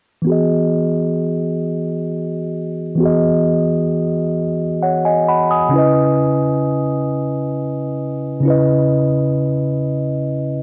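A cassette-worn home recording with a moderate studio reverb frames this brief, late-night R&B fragment in a straight 6/8, cut from a longer piece and tuned slightly sharp at A4 = 441 Hz. A mellow, clean tine electric piano sits up front, carrying the accompaniment from 0.2 s through a tape-tinged low-pass filter that sweeps across the whole passage. Its sultry voicings move from Emaj9 to C#m9 at 5.7 s.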